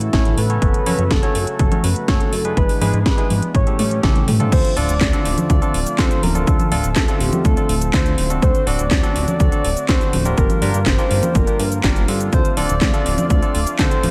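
Italo disco at 123 BPM in a straight 4/4, this excerpt from a longer piece carries a melodramatic, bittersweet mood, opening in a major-sounding passage before settling into D minor at 4.5 s, tuned slightly flat of standard pitch. A layered house drum kit with a cracking snare, metallic hats, cabasa, congas, handclaps, toms and crash cymbal opens the excerpt, all overdriven and bathed in gated reverb, and a punchy, overdriven electronic kick joins a moment later and sits at the front, with a fill leading into the minor section at 3.8 s. Beneath them, a glossy, retro chorused synth bass built from pulse and sawtooth waves holds the low end with a mellow, sustained tone. A bright, barky tine electric piano played through a combo amp adds clean stabs, while a smooth, warbling vintage pad of detuned sawtooth and wave-folded sine sustains chords in the background. Over the top, a soft, round octave-layered synth lead with a sub octave, vibrato, chorus and delay carries the melody through progressions like Dm7 to D7 and Gm7, in a mix that is otherwise dry.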